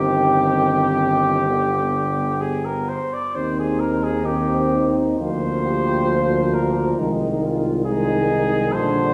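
A slow, rubato 4/4 pulse of 62-70 BPM carries this solemn, melancholic hymn-like passage for brass band in C minor, cut from a longer piece. Up front, a solo cornet sings the melody with light vibrato and a punchy, roomy tone, while a tight French horn section supplies a second line beneath it. In the background, a trombone section and a solo euphonium, each touched with light vibrato, fill out the accompaniment, and a solo tuba anchors the bass with vibrato. The harmony moves from Cm/G through G, Cm/Eb and Bb/D to Ab/C. A wet scoring-stage reverb and a listening position further back in the room lend the brass a warm, distant cast, and some lossy compression artefacts can be heard.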